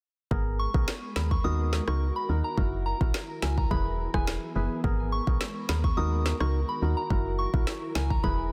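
A dense, heavily limited modern master set in a digital ambience carries this tough, hypnotic dancehall fragment at 106 BPM in G# minor, cut from a longer piece. Up front, an overdriven electronic afro-pop drum kit pairs a deep kick with a woody snare and rim clicks. Beside it, a round, dark FM bass sits low. A hollow, percussive organ stab with a chorus sheen plays the accompaniment, while a glassy, ethereal FM pad with slow attack, ensemble chorus, built-in reverb and sidechain pumping holds sustained chords underneath. A pure, gentle synth bell carries the melody high above, softened by chorus and delay, over a looping progression of G#madd9, D#m, F#7 and E. The hi-hats fall silent at 7.1 seconds, and the whole passage runs to 8.5 seconds.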